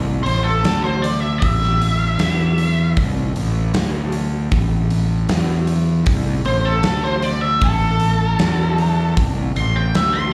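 An octave-fuzz lead guitar, dark and distorted with wah and slapback echo, carries a solo through this heavy, gritty blues rock and southern rock excerpt in A minor at a straight 78 BPM. An overdriven, growly fingered electric bass sits up front from the first moment, while a big acoustic rock drum kit with a punchy kick, medium-tuned snare and rolled-off top enters at 0.3 seconds. It sounds like a live gig heard through the venue's PA, with a touch of club reverb, and the chords move around Am, with a closing turn through Esus4 back to Am.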